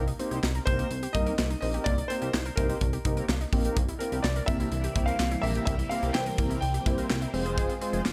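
Melancholic yet driving, this synth-pop passage moves at 126 BPM in 4/4, tuned slightly flat to A4 = 437 Hz, over a Cm7 that turns to C7 at 3.8 seconds before landing on Fm. A punchy, polished, airy acoustic drum kit with handclaps, hi-hat and a medium-tuned snare sits up front, joined by a glossy, chorused pulse-and-saw synth bass, while a dark, detuned synth brass with vibrato carries the accompaniment and a lo-fi, warbling pluck with tape echo spins arpeggios in the background. From 0.7 seconds a natural-sounding grand piano with deep bass and short sustain plays the melody through tape echo, and at 3.8 seconds a bright, swirling string machine, phased and ensemble-chorused, adds sustained chords behind it all in a studio ambience.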